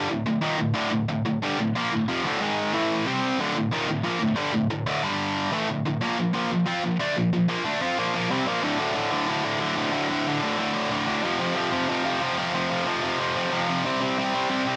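Metal in D minor at 184 BPM with an epic, dark mood, cut from a longer piece, played by a solo tight, bright, distorted electric guitar that is picked, double-tracked and up front in a moderate studio reverb, ranging from D2 to F4 while playing mostly power chords before dropping into a half-time feel at 8.6 seconds.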